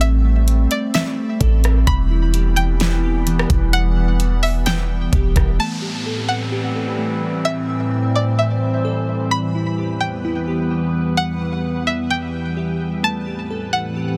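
A dense, heavily limited mix with a dry, close sound opens this hazy, spacious cloud-rap fragment at 129 BPM in a half-time 4/4 feel, circling between Am7 and Em in A dorian. An ethereal FM pad with ensemble chorus, built-in reverb and sidechain pumping holds sustained chords up front. Mellow, detuned digital keys with chorus and tape echo spin arpeggios beneath a bright, twangy, warbling resonator pluck melody soaked in chorus, phaser and tape echo. A deep, boomy 808-style bass and an R&B kit with a knocking kick, fat snare, rim clicks and hi-hats drive the opening until about 5.5 seconds, after which an electronic downlifter sweeps through from 5.6 to 9.3 seconds over the floating upper layers.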